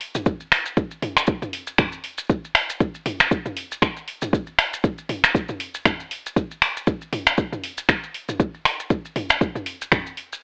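Lo-fi, like a home cassette played through AM radio, with a moderate studio reverb, this driving, hypnotic house fragment is cut from a longer piece and rides a light swing on the sixteenths. A layered, tape-warmed deep house drum kit of finger snaps, metallic hi-hats and toms sits up front alongside a deep electronic kick that enters at 0.3 seconds. Close, grainy maracas add a mellow acoustic texture far beneath them.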